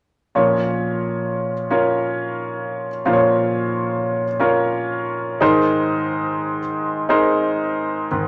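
A clear grand piano opens this short pop excerpt at 0.3 seconds, carrying the accompaniment alone in Bb minor at 89 BPM in a straight 4/4. The mood is earnest and driving, with the harmony resting on Bbm before moving to Abadd9 at 5.4 seconds. The piano sits present and up front, spanning Ab2 to Db5, with an intimate character and audible action noise in the sound. A moderate studio reverb gives the instrument a modest sense of space. The piano plays through to 8.3 seconds, where the fragment is cut from the longer piece.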